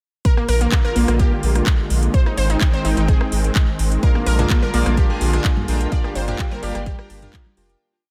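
A punchy four-on-the-floor kick drives this uplifting, expansive progressive house drop, with metallic closed and open hats, handclaps and rim clicks from a small-room house kit, a round, deep analog bass pumping off the beat under tube saturation, a bright detuned unison pluck spinning sixteenth-note arpeggios through delay, and a lush, gritty supersaw pad holding sustained chords, before a glossy chorused polysynth adds dotted-rhythm stabs at 4.0 s, background electronic toms and congas join at 4.4 s, and the whole piece fades out from 5.3 s.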